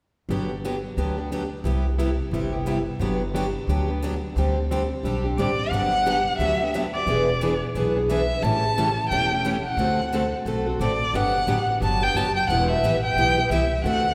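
Two picked steel-string acoustic guitars, one a parlour-toned plugged-in instrument and the other bright with fresh strings and audible finger squeak, open this playful jazz manouche swing at 177 BPM in G major together with a woody, thumpy pizzicato upright bass on gut strings. At 5.4 s a single bowed violin takes the melody, singing with vibrato and expressive portamento as the harmony moves from Gmaj7 through E7, A7 and D7. The whole piece swings inside a church's long, wet reverb, and it is cut from a longer performance.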